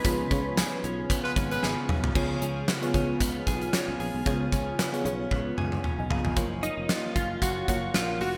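Romantic and uplifting, this cut from a longer 1980s-style pop piece rides a gently swung groove on a gated drum kit with a fat snare, bright cymbals and drum fills, beneath a growly fretless bass, a lush, dreamy FM electric piano with a soft pad layer, a glassy, ethereal pad that stops at 6.3 seconds, a chorused clean guitar riff with delay, a second compressed, picked guitar carrying the melody that returns at 6.6 seconds, and a tight horn section with vibrato stabbing briefly at 1.2 seconds, set in a bright digital production with moderate hall reverb.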